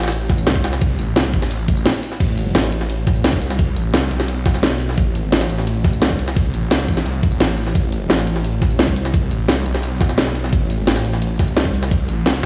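A straight 173 BPM 4/4 drum and bass groove in A minor drives this dark, mechanical and futuristic technical excerpt, where a knocking electronic kick from 0.3 seconds and an up-front, cracking drum and bass kit of snare, hi-hat, ride, crash and tambourine sit over a gritty, pitched-up, tape-toned jungle sampler kit with filtered hats and snare in the background, all joined by a snarling, detuned sawtooth bass that growls between A1 and C2 with tube-saturated distortion and sidechain pumping, heard through the stone-room echo of a big sound system in a bare space.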